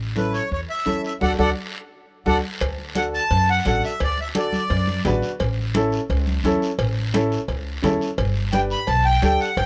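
Cumbia in D major at 172 BPM, joyful and danceable, this short excerpt sets a reedy, airy accordion melody up front over woody pizzicato upright bass, a smooth vintage upright piano and close, dry congas struck with hard hands, all scraped along by a raspy guiro, with the band hitting an accent from 1.2 seconds, ringing cowbell and timbales joining at 2.6 seconds, and the accordion pausing before returning at 8.5 seconds, all with little or even zero reverb.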